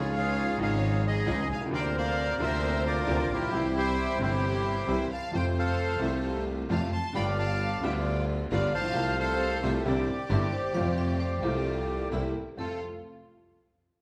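A bandoneon carries the melody from the start, its reedy, boxy voice sitting up front over a rich, softly bowed double bass that plays sul tasto with a pure, floating tone. This is a nostalgic yet playful tango in F major at 133 BPM in 4/4, taken with a rubato feel, and the passage is cut from a longer piece. A bright upright piano with a woody, brilliant touch and short sustain supplies the accompaniment, while a distant, lush violin section adds a second line and a close string section punctuates with stabs, both sitting in the background. The harmony moves from Dbadd9 and Bbadd9/D through C, F and G7 before settling toward F by 12.6 seconds. At 10.3 seconds a vibraphone struck with hard mallets enters with a metallic, ringing second line and a medium motor vibrato. The whole ensemble is bathed in the generous reverb of a recital hall, as if heard in a church or concert hall.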